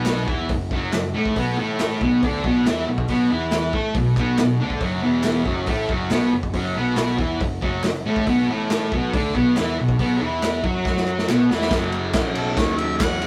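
A thick, bright fuzz guitar riff, double-tracked and up front, opens this rowdy, swaggering garage rock fragment at 139 BPM in a straight 4/4 over a fuzzed, overdriven picked bass, moving through Esus24, Asus24 and B5 before landing on F#. A raw garage kit with a punchy kick, gritty saturated tone and dark cymbals drives along with very quiet, crisp group handclaps, and a drum fill at 10.9 seconds leads into a new section. At 12.4 seconds a clear, overdriven harmonica solo enters with light vibrato and scooped notes, all in a rough rehearsal-room recording with moderate stone-room reverb, tuned to A4 = 435 Hz.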